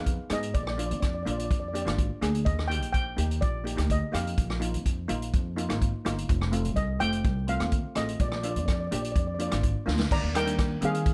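A straight, bouncy calypso groove in 4/4 drives this festive short excerpt, cut from a longer piece. The upright bass and vintage drum kit sit up front: the bass is plucked pizzicato on steel strings with a woody, bright tone, while the kit, with its tight kick, medium-tuned snare, rim clicks, hi-hat and dark crash cymbal, sounds natural in a small room. Two double-second steel pans play together. One carries the melody with soft rubber sticks in a mellow, shimmering voice, and the other plays accompaniment with hard rubber sticks in a dark, smooth metallic tone. The harmony moves from Abm and Bb7 through Ebmaj7, Bbsus4 and F7 to Bb, and a drum fill at 9.9 seconds leads into a new section at 10.1 seconds that lands back on Ebmaj7. Close, detailed microphones and little reverb keep the sound intimate and dry.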